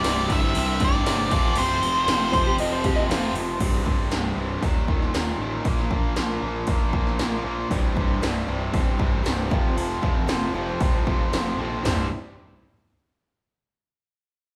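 Sunny and confident, this classic rock passage is cut from a longer piece and rides a straight, steady groove. Up front, 80s electronic pad drums pair a punchy kick and gated snare with metallic hats and gated reverb on the snare and toms. Beneath them sits an overdriven, fuzzy electric bass, and a heavy riff bed comes from an overdriven electric guitar in the background and two tight distorted guitars, one of them double-tracked and dropping out early. A dark, octave-fuzz lead guitar carries the melody at the start until 2.6 seconds. A clean lap steel guitar enters at 2.3 seconds with slide and volume swells for a brief second line, returning at the very end. A very quiet, round tonewheel organ holds sustained chords through a slow rotary speaker with key click, while a shimmering, octave-doubled twelve-string acoustic guitar picks along faintly and returns at 7.7 seconds, all heard as a band playing live in one room with moderate large studio reverb.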